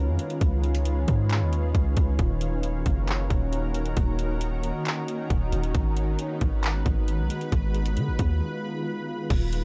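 A deep, boomy 808-style bass sits up front in this hazy, spacious cloud-rap fragment, anchoring a half-time trap kit of hard-clipped kick, metallic hats, handclaps and crash that enters at 0.2 s, while a dark, shimmering pad of detuned, granular chords hovers behind with chorus, reverb and sidechain pumping, the whole captured as a dry, gritty cassette-tape recording with faint mains hum and a break from 8.4 to 9.3 s.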